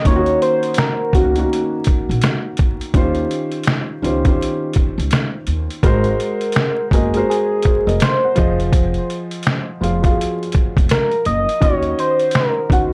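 Lo-fi hip hop at 83 BPM in Eb dorian with a swung 16th-note feel, melancholic and hazy, cut from a longer piece and moving through chords like Ebm7, Ab9 and Fm7. A round, keys-like FM synth lead carries the melody with a gentle vibrato, chorus, tape echo and plate reverb, over a felt-muted upright piano that sounds mellow and intimate, and a woody pizzicato upright bass. An up-front, pitched-down sampler-style drum kit of thumpy kick, medium-tuned snare, hi-hat and finger snaps drives the groove, and the whole dry, gritty recording sits in a small room with vinyl crackle.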